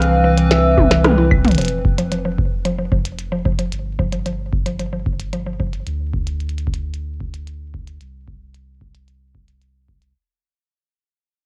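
Playful and glitchy, this IDM piece, cut from a longer work, moves at 112 BPM in a straight 4/4 and carries the hazy character of a cassette home recording in a moderate room. It opens on a Cmaj7 chord, with a gentle, keys-like FM lead sounding a brief melody in the first second, while a warbling, detuned square-and-triangle pad holds nostalgic, lo-fi chords through chorus and its own reverb until 1.6 s. Underneath, a round sine sub bass stays mellow and up front, and a glitchy kit of claves, clicky hats, rim clicks, a tiny snare and toms plays throughout, with a drum fill and a band accent marking the close of the opening section. A deep, analog electronic kick joins at 0.8 s, and a woody, mallet-like FM pluck spins short-decaying arpeggios with chorus and analog delay before dropping away. The rest of the passage fades out gradually over the drums and bass, passing through a Fsus2/G harmony, its sound softened throughout by the saturated grain of tape.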